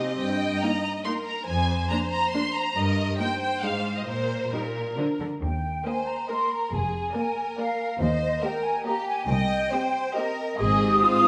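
This excerpt from a longer classical-period movement opens with the full string body at once: a violin section carrying the melody, a second violin line beneath it, violas in accompaniment, and cellos anchoring the bass. The piece is quick at 140 BPM in 3/4 with a straight feel in Eb major, and its mood is urgent and stormy. The bowed strings share a rich, vibrato-laden character, with the up-front lead violins sounding expressive, the second violins focused with a smooth top, and the violas adding touches of portamento from a more distant position. At 5.4 s the second section begins, bringing in an airy, bright flute ensemble on a second line near the front, and a close, even double bass section that deepens the low end until 11.0 s. The harmony moves through Eb and Bb7 chords with an Fm7 and a brief break before settling toward Cm and Ab, all set in a wet recital hall reverb.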